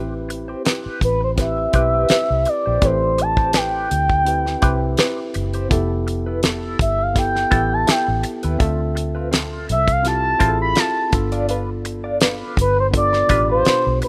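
Lush 1970s-style soul with a smooth, easy swing, this short cut from a longer piece sits in a rough home-demo mix bathed in studio reverb. A worn, slightly out-of-tune tine electric piano, mellow and lightly overdriven, carries the chords from Am9 through Fmaj9#11 and Dm7 to G7. Alongside it, a clean, compressed, direct-recorded electric guitar plays a scooped, picked riff colored by wah and tremolo. Underneath, a dark, foam-muted fingered bass gives a round, amped low end, and a dry, damped 70s kit with a fat snare, tight kick, hi-hat and rolled-off top joins at 0.3 seconds. At 1.0 seconds an expressive synth lead takes the melody, blending sawtooth and triangle tones with a moving notch, chorus and vibrato into a sustained voice that sits prominently at the front of the mix.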